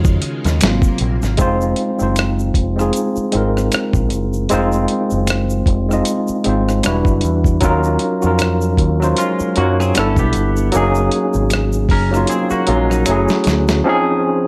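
Smooth and relaxed, this neo-soul R&B passage, cut from a longer piece, moves at an unhurried 77 BPM in 4/4 with a gentle swing on the sixteenths. A worn, slightly out-of-tune tine electric piano leads the accompaniment, lightly overdriven and bathed in plate reverb, while a swirling, warbling string machine adds bright, soft-attack sustained chords colored by ensemble chorus and phaser until 1.4 seconds. A dusty, sampler-style drum kit sits up front with a thumpy kick, medium-tuned snare, rim clicks and hi-hat, all gritty and tape-warm, and a dark, round picked bass anchors the low end. An egg shaker, finger snaps and group handclaps add close, dry texture in the background, and from 9.2 seconds a clean, hollow-bodied semi-hollow guitar enters as a second line, lush with chorus and plate reverb. The harmony drifts through rich extended chords such as Ebm11, Ab13, Em9 and G6, and a drum fill at 13.1 seconds closes the passage as it lands on Dbmaj7.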